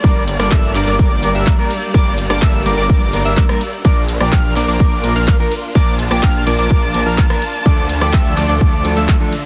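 This emotional, euphoric festival progressive house excerpt opens with every part sounding at once, led by a punchy electronic kick set up front and a layered pop kit of handclaps, hi-hat, ride cymbal and rim click, overdriven and re-recorded in a small room. Beneath them a thick detuned saw bass, saturated and chorused, anchors the low end, while a bold unison lead plays high arpeggios with vibrato, a sub octave and a moving notch, its dark tone carried by tape echo. A sawtooth supersaw stab plays a riff in the background with a filter sweep and tape echo, and a mellow, clean electric guitar, fingered and bathed in lush chorus and tape echo, adds accompaniment. A rich bowed string ensemble holds expressive sustained chords behind them, and sidechain pumping breathes through the bass, lead, stab, guitar and strings. The harmony moves from Gm to Bb at 3.8 seconds and on to Dm at 7.7 seconds, set in light reverb with a dense, heavily limited modern master.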